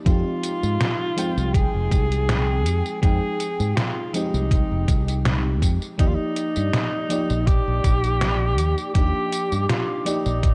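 A breathy alto saxophone carries the melody in a jazz-style solo, its subtone, vibrato and scooped notes roughened by 12-bit sampler grit and trailed by tape echo, in this melancholic, woozy vaporwave fragment cut from a longer piece, set at 81 BPM with a light swing in F dorian. Beneath it, a dreamy FM electric piano with a soft pad layer shimmers through lush chorus, while a round, punchy fingered bass and a thumpy, up-front electronic kick anchor the groove alongside a detuned 8-bit drum machine of hi-hat, snare and tambourine, both drum parts gritty and tape-warm as if re-recorded in a small room. The harmony moves from Fm7 to Ebmaj7 at 6.0 seconds, and at 6.6 seconds a very quiet, warbling, nostalgic tape-like pad drifts in with mellow sustained chords, all in a dry, close mix.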